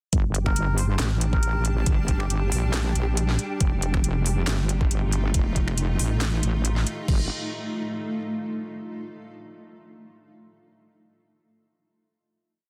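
A heavy, wobbling bass sits up front in this dark, meditative deep dubstep piece, its detuned sawtooth-and-sine tone thickened by chorus as it holds long, low notes from 0.1 seconds. The track runs at 138 BPM in G minor with a half-time feel and a light swing on the sixteenths, moving from G minor to F7 before settling on a G5 chord at 7.1 seconds for the close. A knocking, tape-warm electronic kick drives the half-time groove alongside a layered garage kit of cracking snare, metallic hi-hats, finger snaps, handclaps and crash cymbal. Behind them, a blurred, evolving granular cloud pad enters at 0.9 seconds with slow-attack sustained chords bathed in its own reverb, while a flickering, grainy texture holds a single high G in the background. Early on, a reedy, breathy melodica with dub echo drifts in for short phrases in the distance until 2.4 seconds, all within a dense, heavily limited modern master and a light room reverb.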